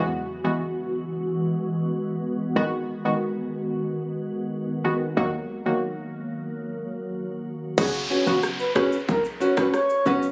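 Captured on a phone in a studio room and set in a moderate, lush hall reverb with compression, this bouncy, summery dancehall excerpt in B major moves at 92 BPM, opening with a crystalline wavetable pluck, an ethereal FM pad with ensemble chorus and phaser pumping against the sidechain, and a punchy, tight 808-style bass over Eadd9, G#m7 and D#m chords. At 7.8 seconds the pad drops out as the harmony settles on Bsus2, and a gritty, sampled island pop kit with crash, kick, rim click and shaker arrives alongside an electronic downlifter and a soft, breathy flute-like lead carrying tremolo and tape echo. At 8.1 seconds an up-front, fingerpicked nylon-string guitar adds classical arpeggios.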